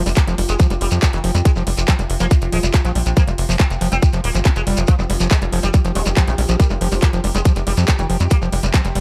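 A resonant blip pluck, a morphing wavetable pad, a squelchy overdriven acid bass and a punchy sequencer bass open this intense, driving psychedelic trance excerpt, joined at 0.1 s by a buzzing, plectrum-plucked sitar melody with phaser and delay, a garage kit of handclaps and metallic hats, and a grainy shekere, while an up-front electronic kick enters at 0.2 s and sidechain pumping moves the pad, acid bass and sitar.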